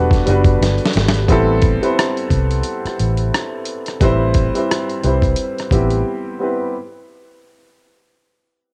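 Sultry and late-night, this short neo-soul R&B excerpt sets a cassette-tinged grand piano, kept up front, over a dark, round, foam-muted electric bass and a gritty, compressed sampler-style drum kit with a thumpy kick and rim clicks, moving from Gmaj9 to Am9 after a drum fill ending at 1.3 seconds, before a brief break at 6.1 seconds leaves the piano playing alone.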